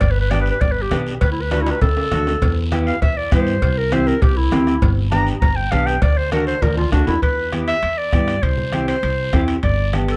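Lightly reverberant and festive, this short cut from a longer cumbia at 200 BPM in G major carries a joyful, straight 4/4 feel. Up front, a warm, classically styled clarinet takes a solo melody through the opening 7.2 seconds, ranging between D4 and Bb5, before the piece shifts into a new section. Beneath it, a woody pizzicato upright bass with steel strings anchors the low end, while a dark, clean, fingered electric guitar adds mellow accompaniment coloured by a lush chorus. Most of the percussion sits further back: a soft-beaten bombo in a live room, thick-skinned, low-tuned congas, and a ringing, vintage-toned metal cowbell and timbales, with drum fills at 1.5 and 6.6 seconds. A raspy, saturated guiro adds its own texture. The harmony cycles through G, D, Em and C, returning to G at the close.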